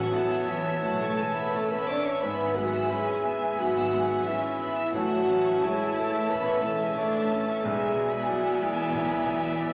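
A mellow, tight French horn section holds sustained chords at the front of this passionate, lyrical romantic movement for piano and orchestra, taken from a longer piece in A major and moving at a rubato 84-94 BPM in 4/4. Above it, a lush studio violin section carries the melody with vibrato and portamento, joined by a clear, intimate baby grand piano in the background whose audible action noise and long sustain add a natural touch. The second line is shared by a hollow, pure silver concert flute, a rich chamber violin section, a background clarinet and a close-miked oboe with light vibrato. Underneath, a distant, roomy bassoon and a focused chamber viola section accompany, while a smooth, even cello section and a soft-attacked double bass section, entering at 0.8 seconds, supply the bass. Timpani with medium mallets on calf heads are barely audible between 4.9 and 5.9 seconds as the harmony moves from A through E/G# back to A and on to E7/B. 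The whole ensemble sits in a recital hall reverb that lends the sound a gentle bloom.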